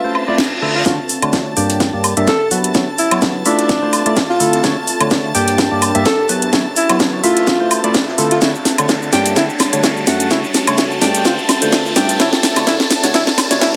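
This feel-good piano house excerpt opens on a hollow, percussive organ stab riff and bright, biting violin chords over a warbling, nostalgic tape-like pad, while a breathy, distant alto saxophone carries the joyful melody through a digital delay and a reverse cymbal sweeps in at 0.1 seconds. From 0.9 seconds an overdriven electronic kick joins the up-front house kit, with its cracking snare and metallic hats, and a very quiet vintage acoustic kit underneath. The 127 BPM groove swings lightly through a build-up with a drum fill, a riser and a filter sweep on the synth stab, moving through Fmaj7, Dmaj7, Gm and F#7sus4 chords in a small, moderately reverberant room.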